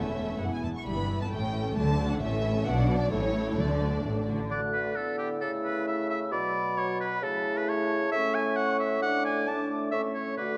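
A dark, woody violin section opens this quick, graceful classical-period movement in 2/4, carrying the melody over a warm second violin line, a lush viola accompaniment and a distant bass of cellos and double basses, all bowed with vibrato. At 1.8 seconds a very quiet timpani joins on hard mallets, articulate against the strings. At 4.5 seconds the strings give way to a lively wind passage: an up-front, clear oboe and a hollow, pure-toned silver flute share the upper lines. Beneath them a roomy bassoon supplies the accompaniment, and a tight French horn section holds soft-edged sustained chords. A generous scoring-stage reverb wraps the orchestra in a spacious sound, and the fragment is cut from a longer piece.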